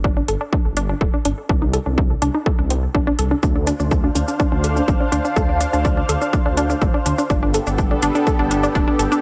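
A bright, punchy unison pluck spins arpeggios through a filter sweep and dub echo across this 9.2-second melodic techno excerpt in D minor at 124 BPM. It pumps to the sidechain over a menacing, saturated detuned saw bass and a heavy, overdriven kick, both up front. Metallic, tape-warm hi-hat and shaker enter at 0.3 seconds, and at 3.4 seconds a thick unison pad with chorus, phaser and 12-bit sampler grit spreads sustained chords from Dm7 to Gadd9, adding a melancholic, cinematic cast under light digital ambience.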